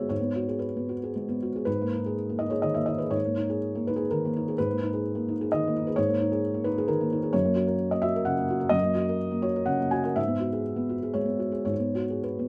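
Neoclassical minimalist piano in G# minor and 3/4, cut from a longer piece, in which a solo felt-muted upright piano plays with a wistful, reflective rubato between 107 and 132 BPM, its dark, intimate tone sitting up front with thick felt and audible action noise under light reverb, as the harmony moves from a rootless Eadd9/G# to G#madd9 at 1.7 seconds and F# at 7.3 seconds before returning to Eadd9/G#.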